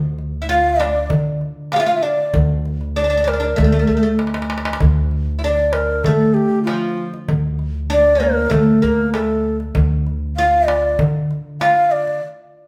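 A dark, growly upright bass opens this hypnotic, longing Arabic maqam excerpt in D minor at 97 BPM. Within the first half second it is joined by a crisp, saturated metal-shell darbuka, a woody, plectrum-plucked fretless oud on a second line, and a breathy, mellow ney carrying the melody up front. The darbuka plays a fill at 4.2 seconds, and the ensemble, heard live together in a large, reverberant studio, stops at 12.2 seconds.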